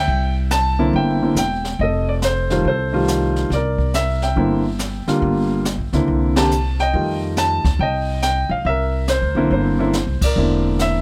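Jazz piano trio excerpt in a relaxed, swinging 4/4 at 140 BPM in C mixolydian: an up-front grand piano carries the melody through plate reverb, a woody, thumpy pizzicato upright bass on gut strings sits close, and a brushed kit with dark cymbals, a high-tuned snare and a boomy kick joins at 0.1 seconds, with the band hitting accents at 6.3 and 10.2 seconds over C9, F9 and Gm7 changes in a light, natural room.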